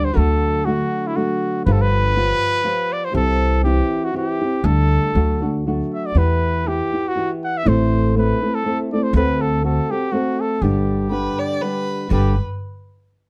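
A mellow trumpet carries the melody with light vibrato in a classical style, over a dark, thumb-plucked flamenco guitar and a woody, thumpy pizzicato upright bass, all up front from the start of this romantic, proud mariachi excerpt in a swung triple metre. The harmony moves from D through G7, C, Em, Am and D7 before settling on G. At 11.1 s a single bowed violin enters up front as an expressive second line with a soft attack, vibrato and portamento, and the whole is set in light reverb with a warm production.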